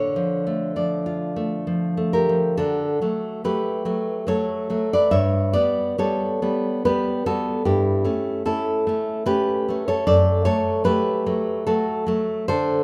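Romantic solo classical guitar in D major, this passionate, intimate excerpt moves at 73 BPM in 3/4 with uneven, rubato beats, opening on D minor before brightening to D major at 2.6 s and passing through G, A7/G and F#madd11. The fingerpicked nylon-string guitar sits up front, full-bodied and deep, with fresh strings and audible finger squeak as it ranges from F#2 to E5. A moderate recital hall reverb surrounds the instrument with a gentle sense of space.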